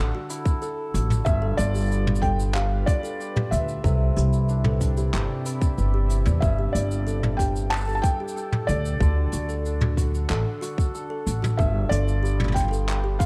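A straight 4/4 groove is driven by a tight, overdriven electronic kick sitting up front, with a small-room jazz kit played with brushes adding handclaps, hi-hat, shaker and toms, and a woody, growly pizzicato upright bass holding the low end. In this delicate folktronica piece, a bright hammered dulcimer shimmers through arpeggios with delay, a hollow, thumbnail-plucked kalimba rings out a second line, and a soft, felt-muted upright piano enters at 1.2 s with an intimate melody, all over a nostalgic, lo-fi pad of detuned, chorused sustained chords warbling in the background. The production is dark and warm with light reverb, and the passage is cut from a longer piece.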